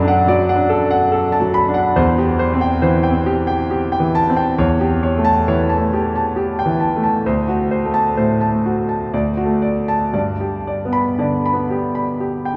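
Moving in a flexible, rubato 3/4 at roughly 56-73 BPM, this hopeful fragment of a romantic classical character piece features a solo concert grand piano, clear and smooth with a vintage tone, deep bass and short sustain, placed up front within a lush cathedral reverb lasting 5.1 seconds as the harmony drifts from D/F# through C/E, A7/E and D7 before coming to rest on D and then G.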